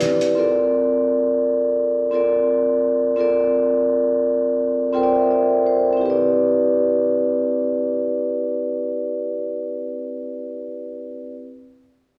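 A soft-mallet vibraphone, metallic and ringing yet mellow, sits up front from 0.0 s in this tough, gritty hip hop fragment at 85 BPM, swung on the sixteenths and tuned to A4 = 439 Hz. Its mid-forward, filtered accompaniment holds on C13sus4 before shifting to Cmaj9 at 6.0 s, and it carries on until 11.4 s. The sound plays through a big system in a bare stone room, with a moderate echo-chamber reverb of 1.7 s.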